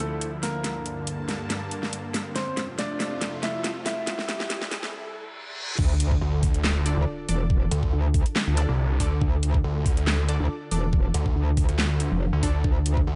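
A metallic, chorus-laden wobble bass storms in at 5.8 seconds with a knocking electronic kick, joined by a snarling, distorted saw bass at 6.2 seconds, driving the drop of this heavy, aggressive half-time dubstep passage after a build-up where a clear grand piano melody with tape echo floats over a lush, pumping supersaw pad, a dubstep kit with a huge snare and metallic hats, and background risers, reverse cymbal and sub drop, while punchy, bright orchestra-hit-like stabs join from 6.9 seconds.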